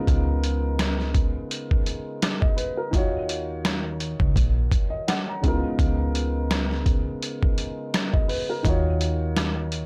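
A dark, mellow upright piano opens this moody boom-bap hip-hop excerpt at 84 BPM, its intimate, vintage tone carrying audible action noise, long sustain and a cassette-tape, filtered haze as it moves between Db13 and Ebm7 chords. From 0.1 seconds a woody pizzicato upright bass and a sampler-style trip hop kit join in a swung 4/4 groove. The kit sits up front, compressed, pitched down and muffled, with a thumpy kick, medium-tuned snare, rim click and hi-hat. The dry mix keeps the piano close.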